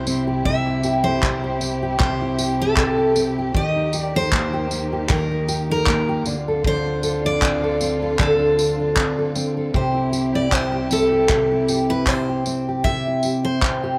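Lightly reverberant, this sunny, heartfelt acoustic pop excerpt in C major moves at 78 BPM in a gently swung 4/4, with a picked dreadnought steel-string guitar carrying the melody up front over a full-bodied fingerpicked steel-string guitar accompaniment, a roomy soft brush kit with a tight kick, handclaps and tambourine, and a warm, smooth-topped bowed string section holding sustained chords with expressive vibrato and portamento until 12.8 s, all through a progression of C, Eb, Dm7 and back to C.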